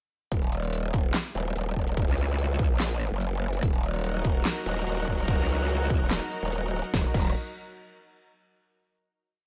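A growling, saturated wobble bass with chorus and overdrive erupts at 0.3 s alongside a punchy electronic kick and a big-room dance kit of huge snare, claps, crisp closed hats and crash, both treated with studio reverb, driving a heavy, menacing half-time dubstep drop in Eb minor at 145 BPM as the bass phrases shift their wobble speed, before a lush, bright detuned unison pad with chorus and sidechain pumping joins at 3.6 s and the piece settles onto a final chord from 6.9 s.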